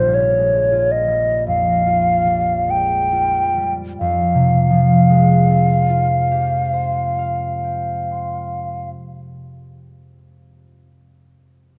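Close, detailed microphones and a light reverb give this recording an intimate, up-front presence. It is an impressionist classical duo for flute and harp in F minor, hazy and wistful in mood, moving in a rubato 4/4 between 43 and 62 BPM and slowing through its opening bars. A silver concert flute carries the melody between C5 and G5 with a pure, hollow metal tone, tongued notes and vibrato. The concert harp accompanies across a broad span from Bb1 to C6, its thumb-plucked strings sounding mellow and ringing. The harmony moves from Bb5 to Fmadd9 at 4.0 seconds, where a second section begins. The flute falls silent at 8.9 seconds, leaving the harp to resonate alone until 10.8 seconds in this fragment cut from a longer piece.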